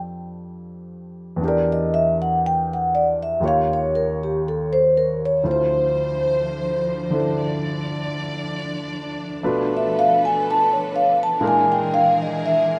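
The recording sounds intimate and close, with a light reverb around dry, up-front instruments, in a short cut from a longer wistful, melancholic jazz ballad at 60 BPM in 4/4 with a lazy swing on the eighths. An upright piano with a woody, natural tone and long sustain opens the accompaniment, spanning from deep bass notes up into the middle register. At 1.5 seconds a vibraphone played with soft mallets takes the solo melody, its metallic ring softened into a mellow, full voice and colored by a slow motor vibrato. A symphonic string section joins at 5.4 seconds with bowed, sustained chords, lush and expressive with a soft attack, sitting quietly beneath the other two parts. The harmony drifts through rich, shadowed chords such as Em7b5, Dm9 and a closing Bb7#11, giving the passage a warm, unresolved, late-night ache.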